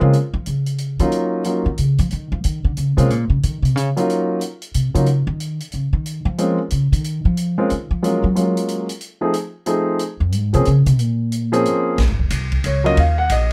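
Swinging in a brisk 3/4 at 182 BPM, this cool, late-night jazz piano trio excerpt in Bb minor features a woody pizzicato upright bass soloing up front until 12.0 seconds, while a warm, deep-bassed concert grand carries the melody over Ebm7, Bbm, Gbmaj7 and F7#9 changes, and a subdued studio drum kit adds dark ride and hi-hat, a medium-tuned snare and a boomy kick, all in a dry room.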